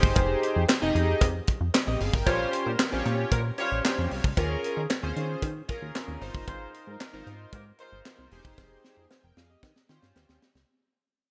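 Slick and danceable, this fading excerpt of early-eighties boogie funk moves at 114 BPM in a straight 4/4, with a punchy, dark analog bass and a glossy, chorused polysynth up front over a tight funk kit with gated reverb on its handclaps, hi-hat, high-tuned snare and tight kick, a very quiet metallic cowbell, and a mellow, distant horn section with delay from 2.3 to 8.0 seconds, all cycling through Fm9, Bbm69, Eb9sus4 and Ab6 in a bright digital production before a drum fill at 8.6 seconds.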